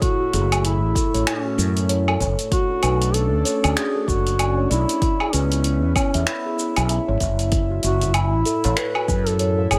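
Meditative and hypnotic, this organic downtempo excerpt in F# minor at 96 BPM with a swung 16th feel sets a mellow, folk-style solo duduk with vibrato, scooped notes and digital delay over a breathy background pad with chorus and sidechain pumping, round, pure steel tongue drum arpeggios struck with soft rubber mallets through delay, a dark, punchy fretless bass up front that enters at 0.3 seconds, a tape-warm deep house kit of finger snaps, hi-hat, shaker and woodblock with a deep electronic kick that stops at 9.2 seconds, and a high-tuned, ringing tabla that slips in very quietly at 7.7 seconds, all moving through F#m9, Bm9, C#m7 and F#m7 in a light reverb.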